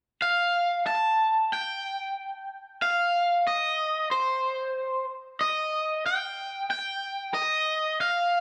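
A straight 4/4 pulse at 93 BPM carries this brooding, cinematic rock fragment, cut from a longer piece. A raw garage electric guitar, picked, bright and overdriven with a slapback echo, sits up front and carries the melody between C5 and A5 from 0.2 to 8.4 seconds. A moderate plate reverb and a dark, warm production wrap the sound, with the tuning set slightly high at A4 = 441 Hz.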